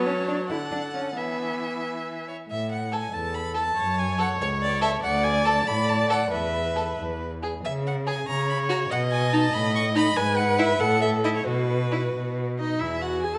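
A graceful, cheerful classical-period movement for string quartet unfolds in 6/8 at around 88-97 BPM with rubato, moving from A major to E major at 7.6 s, as a focused first violin carries the melody over a second violin line, a smooth, even viola accompaniment and an up-front cello bass with soft attacks, portamento and expressive vibrato, all bowed and rich-toned in the reverberant glow of a recital hall.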